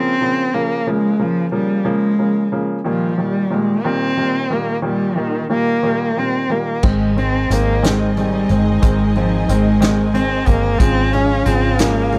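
This short excerpt from a longer piece has a light reverb and an up-front sound, with a clear, polished baby grand piano and an expressive bowed cello sharing the opening 6.8 seconds. It is a heartfelt, swaying six-eight pop ballad in Ab major at 60 BPM, counted in dotted quarters. The solo cello carries the melody with a soft attack, vibrato and portamento, while the present, short-sustaining piano accompanies it as the harmony moves from Bb minor to Eb over Bb. At 6.8 seconds the music lifts onto Ab, and a lush, close symphonic string section enters with sustained chords. A dark, round, foam-muted fingered electric bass with a punchy, amped tone and an acoustic drum kit join at the same moment. The drums, played with bundle sticks in a roomy studio space, bring dark cymbals, a medium-tuned snare and a tight kick as the harmony settles on Db near the close.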